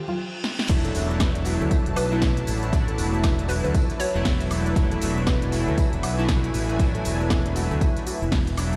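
The recording has a light, small-room sheen with a bare stone-room echo, as if played on a big sound system, and it is cut from a longer piece. It's sunny deep house at 118 BPM in E mixolydian, swung on the sixteenths, moving from G7sus4 to E9sus4 as the drop lands at 0.7 seconds after a reverse cymbal, a downlifter and a drum fill. Up front sit a punchy electronic kick and a fuzzy, overdriven fingered electric bass with tube saturation that pumps with the sidechain, while a layered deep house kit adds a punchy snare, smooth hats, cabasa, woodblock and crash, and a very quiet, dry 70s kit with a rolled-off top brings hi-hat, snare and tambourine. A glossy, retro chorused polysynth plays mellow sustained stabs through tape echo, and a soft, round, dark pluck spins arpeggios in the background with chorus and echo. A lush bowed string section with vibrato pads the backdrop, and between 2.0 and 4.5 seconds a hollow, bouncy square-wave pluck with 12-bit sampler grit adds a short melody.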